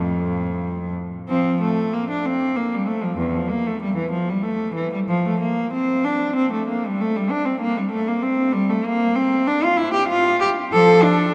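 In a 3/4 at 96 BPM, the pulse bends freely with rubato, giving this baroque-style suite movement for unaccompanied cello a radiant, flowing character in F major. A single bowed cello carries everything alone from 0.0 to 11.3 seconds, ranging from E2 up to A4. Its gut-string tone is rich and reedy, played in period style and placed up front. The instrument sits in a vast cathedral whose reverb rings on for 6.2 seconds, so each phrase blooms into a long, echoing halo. This short cut is taken from a longer piece, and the tuning sits slightly high at A4 = 441 Hz.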